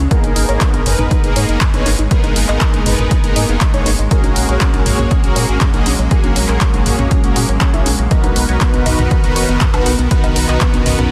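A round, deep analog bass anchors this bittersweet, driving slice of progressive house, its dark sawtooth-and-sine tone pumping against a punchy, overdriven electronic kick. Soft supersaw stabs add smooth, mellow unison warmth with a moving notch and digital delay, while a tight sequenced synth plays detuned, filter-plucked arpeggios in the background, treated with chorus, a cassette-tape character and a filter sweep that runs throughout. From 1.3 seconds an evolving wavetable pad holds sustained chords with a bright, morphing shimmer of ensemble chorus and built-in reverb. A layered deep house kit of handclaps, hi-hat and woodblock carries overdrive and studio reverb, and tape-flavored electronic congas, toms and bongos sit further back. The harmony moves from G#madd9 to F#add9 and on to Bmaj7, and the dense, heavily limited master keeps this cut from a longer track pressing forward in light digital ambience.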